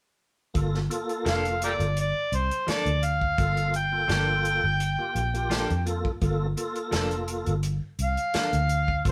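Soulful and brooding, this short excerpt of straight-eighth soul blues moves at 85 BPM in 4/4, sitting in G minor on a lingering Gm9 chord. An overdriven harmonica carries the melody up front from 1.3 seconds, its gritty, amplified tone marked by light vibrato, scooped notes and tongue slaps. Beneath it a tonewheel organ lays down full accompaniment through a slow rotary speaker with chorus vibrato and a touch of overdrive, while a clean, direct-recorded electric guitar adds compressed, picked stabs colored by tremolo. A vintage foam-muted fingered bass sounds dark, round and up front, and an acoustic soul drum kit of hi-hat, kick and snare sits distant and roomy, with a tight kick, a medium-tuned snare and a rolled-off top. The band plays live in one room with moderate studio reverb, giving the groove a close, lived-in feel.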